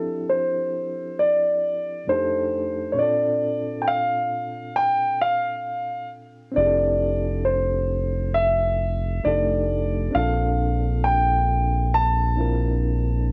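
A dark, mellow grand piano carries the melody up front over a reedy, gritty electric piano with fast tremolo, both colored by cassette tape, and a round, deep analog bass joins at 6.6 seconds in this relaxed, smooth neo-soul R&B excerpt at 67 BPM with a gentle 16th-note swing, moving through Fmaj9, F13 and Bbmaj9 chords in F major with moderate studio reverb and the softened feel of a home cassette recording.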